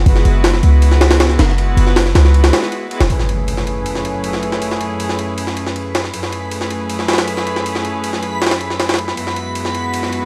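Gritty, overdriven jungle drums sit up front in this dark, nostalgic drum and bass fragment at 158 BPM in F# minor, their sampler-style kit pitched up and compressed, with a thumpy kick, high-tuned snare and ride cymbal. A dark chamber string section holds bowed, reedy chords with light vibrato and a gut-string, period-style tone throughout, moving from Eadd9/F# to F#m11 at 3.1 seconds. A deep, boomy 808-style bass with a sine body and a noise layer plays only through the opening passage, and the kick drops out briefly before an electronic impact hits at 3.1 seconds as the music shifts into its second part. From 3.9 seconds a reversed, swelling texture drifts in the background, dreamy and granular with a soft attack and long release, carrying its own reverb. Light reverb, digital ambience and vinyl crackle lend the whole recording a dusty, faded quality, and the strings return to Eadd9/F# near the close of this cut from a longer piece.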